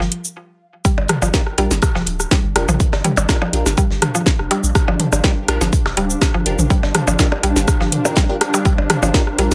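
Minimal techno at 123 BPM in G minor, sparse and cool, this excerpt opens with a woody, round mallet-like FM pluck riff with chorus, delay and sidechain pumping over a deep sine sub bass with a pitch-drop attack, while a very quiet acoustic studio kit ticks hi-hat and snare and a tape-toned house kit adds cabasa, metallic hats and a cracking snare. After a brief stop, the drop lands at 0.8 seconds on a Gm7 chord with a punchy, up-front electronic kick. An overdriven click kit of rim clicks, blips and toms with delay follows, then a crisp, detuned wavetable chord stab with a moving notch sits in the background, and from 2.1 seconds a blurred, evolving granular cloud pad swells in through its own reverb under light overall room ambience.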